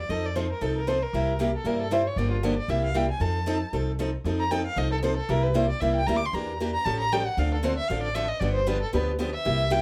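A bowed violin with vibrato and portamento carries an expressive, smooth-topped solo melody through this lively, playful jazz manouche excerpt swinging at 231 BPM in C mixolydian, its tone set in plate reverb, while a dark, woody, thumpy pizzicato upright bass on gut strings and a bright, boxy picked steel-string parlour guitar with fresh strings and finger squeak sit up front beside it in a moderate studio room.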